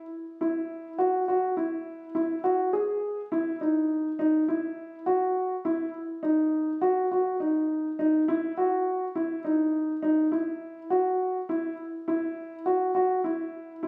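A straight, even pulse in 5/4 gives this progressive instrumental a driving, tense character from its opening moments. A dark grand piano plays alone from 0.4 seconds to the close at 13.9 seconds, keeping to a narrow register between D#4 and G#4. Its tone is mellow and somewhat boxy, and it sits up front in the mix. The room lends a light reverb, and the whole recording has the character of a phone capturing the space, with added studio reverb and compression. This short passage is cut from a longer piece, and the odd metre keeps the tension simmering throughout.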